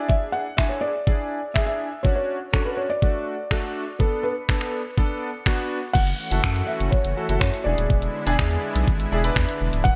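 A muted, felt-dampened upright piano carries a soft, mellow melody with delay over a brilliant grand piano whose chorus-treated chords pump, while an electronic R&B kit of knocking kick, warm hats, finger snaps and crash cymbals sits up front in gated reverb at a driving 123 BPM in straight 4/4. This bittersweet dance-pop fragment moves through E7, Dmaj7, Bm7 and F#m7 with a bright, 1980s-style digital sheen and light ambience. At 6.0 seconds a lush, warbling sawtooth pad with slow attack and a deep, saturated sine sub bass join, both pumping, and a barely audible electronic swell appears at 9.9 seconds as the passage cuts off.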